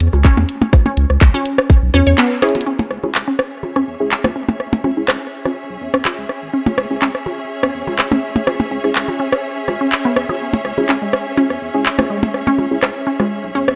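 Hypnotic and quirky, this minimal techno excerpt in C# minor runs at 124 BPM with a light swing, built on a deep, saturated sub bass that pumps against the beat. A tight electronic kick drives only the opening until 1.8 seconds, while garage handclaps and hi-hat, overdriven percussion blips and a rim click with tape echo, and a squelchy, resonant blip pluck with phaser and analog delay keep the groove busy. A brief break brings a band accent, and muted, detuned dub chord stabs with chorus enter at 2.4 seconds alongside a drum fill. At 2.7 seconds a filter sweep opens on the pluck as a lush, bowed symphonic string section with vibrato joins, all within a gritty, dry hardware sound and light digital reverb.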